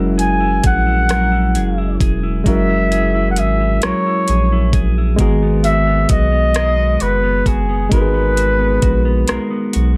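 A yearning, late-night mood hangs over this slow R&B excerpt in six-eight, cut from a longer piece. A warm flugelhorn carries the melody with vibrato and a slapback echo, sounding distant and roomy in a jazz-inflected solo voice. Beneath it, a worn, slightly out-of-tune tine electric piano, lightly overdriven through a combo amp, supplies the accompaniment, while a dark, clean, fingered electric guitar adds a second line touched with subtle chorus. A round analog bass sits deep and up front with a fast attack and sustained tone, and a produced electronic R&B kit gives a knocking kick, metallic hi-hats and rim clicks. The harmony moves from F#9 to G#m9 at 5.2 seconds under light reverb, and a brief break arrives at 9.3 seconds.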